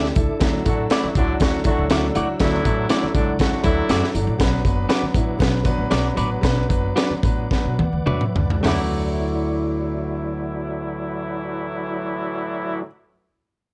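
Uptempo 1960s-style soul in D major, joyful and danceable, running between 102 and 121 BPM in a straight 4/4, with a gritty, saturated breakbeat kit up front, a tight kick, a high-tuned snare and a drum fill at 7.5 seconds before the kit drops out at 8.8 seconds. A woody, thumpy upright bass and a clear, intimate grand piano with audible action noise sit under clean, compressed guitar stabs, while a tonewheel organ with chorus vibrato and key click holds sustained chords in the background and very quiet, low-tuned congas add percussion. A vintage horn section with vibrato and octave doubling plays a second line at the start and returns at 8.6 seconds, after the groove slows down, in a dry cut from a longer piece.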